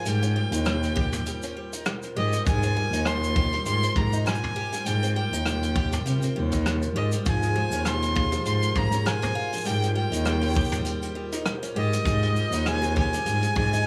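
A rich, smooth violin melody with tape echo opens this playful, hopeful folktronica excerpt over a warbling, nostalgic pad and a shimmering, octave-doubled picked twelve-string acoustic guitar, as a dark, woody bowed cello carries the bass up front, a soft brush drum kit and a tight kick add a gentle swung pulse in a small room, and a bright, ringing kalimba joins in the background at 7.4 seconds.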